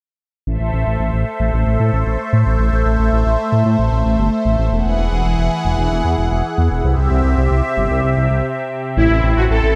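A straight 4/4 pulse at 113 BPM drives this moody synthwave excerpt in A dorian, where a thick, saturated detuned saw bass with chorus carries a filter sweep beneath a swirling phased analog pad holding Am, Eadd9 and C chords from 0.5 s, until a break at 8.4 s gives way to a brief, smooth supersaw melody with cassette-tape color and delay entering at 9.0 s, inside a lush hall reverb and bright 1980s-style digital production.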